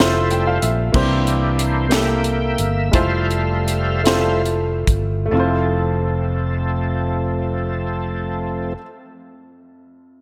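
Uplifting and hopeful, this slow gospel passage in 6/8 and F major, cut from a longer piece, opens with a clear, intimate grand piano fill with audible action and slapback echo before a gritty, overdriven tonewheel organ with slow rotary speaker and chorus vibrato takes a solo from 0.9 to 5.3 seconds as the tempo slows between 44 and 63 BPM, backed by a dark, round fingered electric bass and a crisp, airy fusion drum kit with high-tuned snare and tight kick that stops at 5.1 seconds, after which organ and bass continue to 8.7 seconds and piano carries on to 10.2 seconds over chords moving from Fmaj7 to C7 and back, all set in a big arena sound with concert hall reverb.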